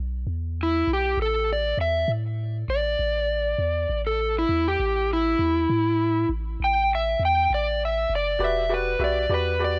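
A dark, overdriven electric slide guitar carries the melody from 0.6 seconds in this smoky, brooding slow blues fragment in a straight 12/8. Underneath, a deep sine-tone sub bass with a punchy, pitch-dropping attack holds long notes from the start, and a brilliant, woody upright piano, close and intimate with audible action noise and long sustain, joins at 8.4 seconds. The guitar, bass and piano all sit up front in a rough home demo mix with a modest small-room ambience.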